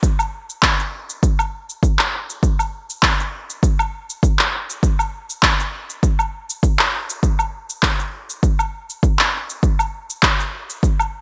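A punchy, layered electronic kick drum sits up front alongside an electronic shaker, woodblock and handclaps bathed in gated reverb, both re-recorded in a small room and carrying this earthy downtempo groove at 100 BPM in 4/4 with a light 16th-note swing, through the roughly 11-second excerpt with light reverb and bright 1980s-style digital production.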